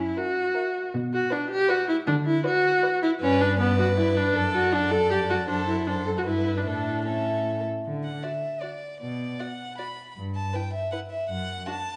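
The viola stands out most in this quick classical-period movement for string quartet, its rich, focused tone sitting up front as it carries the accompaniment from the start. At 157 BPM in 3/4 with a straight feel, the music is restless and dramatic, opening in B minor and turning toward D major at 3.2 s. The cello, also up front and close, lays down a smooth, even bass, while a dark, woody second violin fills the middle range with its own vibrato. Entering at 0.2 s, the first violin carries the melody above the others with an intimate sound, light vibrato and a soft attack, the quietest voice in the group. Each part is a single bowed player, and a recital hall's reverb wraps the quartet in a resonant space in this fragment of a longer piece, which runs to 12.0 s.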